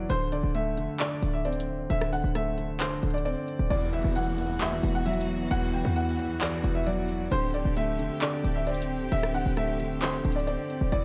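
A punchy, tight 808-style bass sits up front in this melancholic, eerie half-time hip hop and trap excerpt at 133 BPM, beneath a soft, mellow felt-muted upright piano melody trailed by diffuse ambient delay and a natural, deep-bassed concert grand accompaniment, while a crisp electronic trap kit of handclaps, hi-hat and rim click carries vintage 12-bit sampler grit, and at 3.7 s a rich, smooth bowed string section with light vibrato enters on sustained chords alongside a very quiet downlifter that runs until 7.3 s, the whole set in a lightly reverberant studio room.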